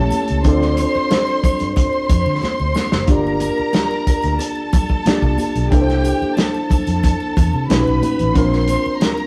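A rough rehearsal-room sound with a moderate stone-room reverb frames this silky, cinematic slice of lush 1970s-style soul, moving through chords such as Dm7, Gm7 and C13. An up-front soul drum kit with a tight kick and a rolled-off top plays a fill at 2.4 seconds, while a round, foam-muted fingered electric bass sits under a worn, slightly out-of-tune tine electric piano. A distant, woody string section with vibrato carries a second line above them, and very quiet, high-tuned congas and a shimmering triangle add light percussion.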